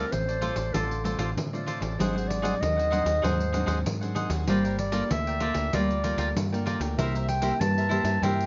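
A soft-attacked clarinet in classical style carries a bittersweet, nostalgic solo across this short samba and choro passage in straight 4/4, moving over Dm7, G#7#11, Gm9 and C7. Crisp picked cavaquinho and fingerpicked nylon-string guitar with fresh strings fill in the accompaniment, while a dark, round, foam-muted vintage electric bass sits up front and a jingly pandeiro played with hard hands enters at 0.1 s. Moderate studio reverb gives the whole a mellow, rounded glow, and the passage is cut from a longer piece.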